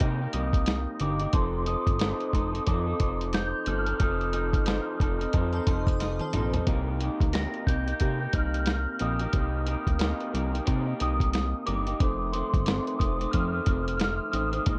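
Indie bedroom pop at 90 BPM with a swung 16th-note feel, this lonely, hazy excerpt from a longer piece circles a Cm7 to F7 vamp over muffled, thumpy sampler-style drums and a glossy, chorused synth bass. A slightly broken-up electric guitar through a small old amp adds lo-fi accompaniment, with subtle chorus, warbly pitch drift and plate reverb. A mellow glockenspiel played with rubber mallets carries the melody from 0.3 s in ensemble chorus, slapback echo and plate reverb; a crystalline FM synth bell slips in a brief second line from 5.5 to 6.7 s alongside a drum fill, and the dark production places the drums and guitar up front in a small room.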